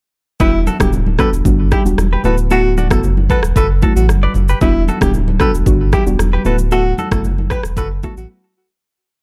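A straight 4/4 afrobeats groove at 114 BPM rolls from a produced electronic kit with a deep, soft kick, syncopated rim clicks and shaker, joined at 0.7 seconds by thin-skinned, saturated congas in the background, while a round sine sub bass bounces up front with slides. Over a dark, chorused pluck playing syncopated chords, a bright, twangy clean electric guitar repeats an interlocking figure doubled in thirds, bathed in lush chorus and delay, and a breathy alto saxophone with vibrato and subtone carries a smooth, syncopated pop hook through its own delay. The mellow, sultry piece sits in a warm digital ambience and fades out from 6.7 seconds, ending on a brief break at 8.3 seconds.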